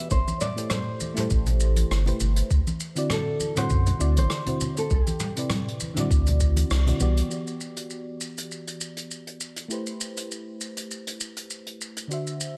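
Sunset chillout at 100 BPM in 4/4 with a lightly swung sixteenth feel, relaxed and warm over Am7, D7, Cmaj7 and Em7 chords. A dark, thumb-plucked nylon-string guitar carries a small melody with delay until 5.8 seconds, over a mellow, warbling FM electric piano with chorus, delay and gritty 12-bit sampler texture that plays to the end, while a deep, round sine sub bass sits up front. Natural brush drums with a rolled-off top, playing hi-hat, rim click, shaker and toms, run the full length, joined in the background by a compressed, thumpy sampled kick and bright, dry congas, with a band accent at 6.7 seconds and a small room reverb giving the parts a sense of space.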